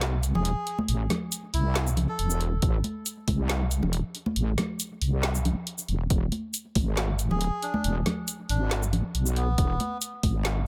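A half-time groove at 138 BPM in 4/4 anchors this cavernous, meditative slice of deep dubstep in A harmonic minor, taken from a longer piece. An up-front deep house drum kit sets the pulse with handclaps, a shaker, dark hats and a woody snare, while bright, close congas played with soft hands add acoustic texture under a dub echo. A punchy, layered electronic kick drum appears only in brief bursts, first at 2.6 seconds, then around 6.1 and 9.6 seconds. Beneath it all, a heavy, saturated wobble bass with a resonant sawtooth-and-sine tone and a chorus effect sits prominently in the low register, holding on A minor before the harmony moves to E at 6.1 seconds. A reedy, breathy melodica with a nasal, plastic-case character floats above in dub echo, heard at the opening and again from 7.3 seconds, all set in a light digital ambience.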